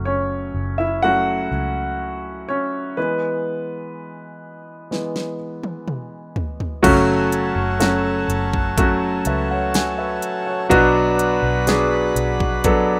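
An up-front, clear concert grand piano carries this longing, emotional pop ballad fragment, its intimate tone revealing audible action noise, deep bass and long sustain over a dark, round, foam-muted electric bass. At 4.9 seconds a layered, electronic pop drum kit comes in with a fill of knocking kick, fat snare, crisp hats, toms and crash, and at 6.8 seconds a reedy, breathing pedal harmonium adds airy sustained chords. The whole sits in digital ambience with the rough feel of a home demo mix.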